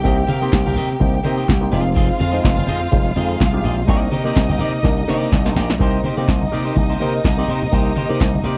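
A swung sixteenth-note disco groove at 125 BPM in C minor drives this sultry, danceable excerpt. A dry analog drum machine with a deep kick, punchy snare and metallic hats sits up front over a bright, punchy slap bass with an envelope filter, while a clean electric guitar with spring reverb and a stringy clav through a phaser fill in the chords, with low-tuned congas in the background from 0.3 s and very quiet, crisp group handclaps. A lush, bowed violin section carries the second line over Cm7, Fm7 and Cm9, and the drums and clav share a fill from 4.8 s before the next section begins at 5.8 s, all in a close, dry 1970s-style studio sound.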